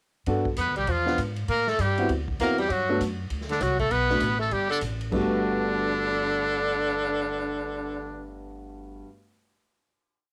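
Small-group swing and bop jazz in G major, this brief, complete piece moves at a brisk 198 BPM in 4/4 with a swinging, playful lilt and the homespun sound of a home recording on cassette in a small room. A trumpet with a metal mute carries the bebop-style theme, buzzy and thin with light vibrato and a smooth top, while an edgy tenor saxophone doubles it an octave below with forceful, scooped notes, both sitting up front with a touch of cassette tape color. A grand piano supplies syncopated comping in rootless voicings, its tone also run through cassette tape, over a harmony that moves from Gmaj9 through E7b9, Am9 and D13 back to Gmaj9. An upright bass walks in pizzicato with a woody body, and a swinging drum kit keeps a stick pattern on the ride cymbal, with a punchy kick, medium-tuned snare, hi-hat, crash and a cymbal swell. After the theme, the group settles onto a final chord from 5.1 seconds, the drums stopping at 7.5 seconds and the piano ringing last until 9.1 seconds.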